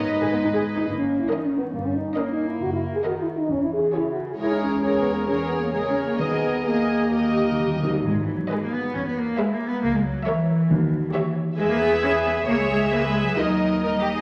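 Vinyl crackle and a recital-hall reverb surround this stormy, dramatic excerpt from a quick classical-period orchestral movement at 135 BPM, played with rubato. An intimate, dark violin section carries the sul tasto melody over a distant, floating second violin line, woody and lush violas, and a pure, up-front cello section joined by the double basses. A tight French horn section holds dark chords until 7.8 s, while hard-mallet calf-head timpani enter at 6.2 s and play a fill leading into the second section at 8.1 s.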